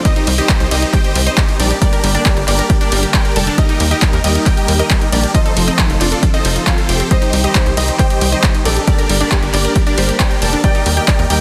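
A huge, detuned supersaw lead with phaser and tape echo opens this driving, euphoric uplifting trance excerpt alongside a lush unison pluck, over a sidechain-pumped bed of veiled con sordino strings, a round chorused analog arpeggio and a tight sawtooth sequencer bass, driven by an overdriven up-front kick and a dry analog drum machine with handclaps, hi-hat and ride, while a soft felt-muted upright piano with audible action noise joins at 7.1 seconds, all in a dense, heavily limited mix.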